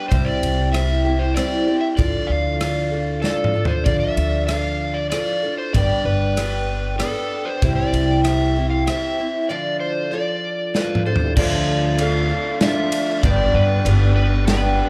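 In a straight three-four lilt, this wistful, dusty folk and heartland rock fragment, heard live through a club PA, sets a dark, overdriven slide guitar melody with slapback echo over a shimmering, octave-doubled twelve-string acoustic guitar, a thumpy, gut-strung upright bass and an airy country drum kit with a punchy kick, adding a very quiet tonewheel organ with slow rotary speaker and key click at 11.0 seconds and a slightly broken-up, lo-fi electric guitar riff bathed in lush chorus at 11.4 seconds.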